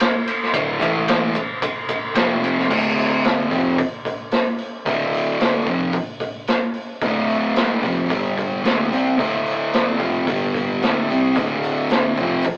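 A rough rehearsal-room recording with tube saturation, an AM-radio tone and a short booth ambience frames this swaggering, raw garage rock cut from a longer piece, moving at 111 BPM in a straight 4/4. A double-tracked, picked fuzz guitar sits up front, grinding through a power-chord riff on D5, A5 and F5 before settling around D5 and G5 from 2.7 s. Beside it is a punchy, gritty acoustic kit with a medium-tuned snare, crash, ride and hi-hat, while a growly, overdriven bass hums very quietly beneath and a grainy, close tube shaker ticks faintly at the start and again from 11.4 s.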